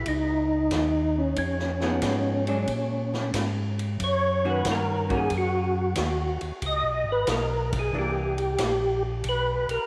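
Swinging at 92 BPM in 4/4, this soulful, greasy soul jazz organ trio fragment sets a percussive tonewheel organ melody with third-harmonic percussion, chorus vibrato, slow rotary speaker and tape echo over a round, lightly overdriven organ bass, a distant, roomy big-band drum kit with boomy kick, medium-tuned snare, hi-hat and ride, and a clean, hollow-body archtop guitar comping from 1.8 to 8.3 seconds, all bathed in a wet echo chamber reverb across chords moving from G#sus4 through D#m7 to Bmaj7(no3).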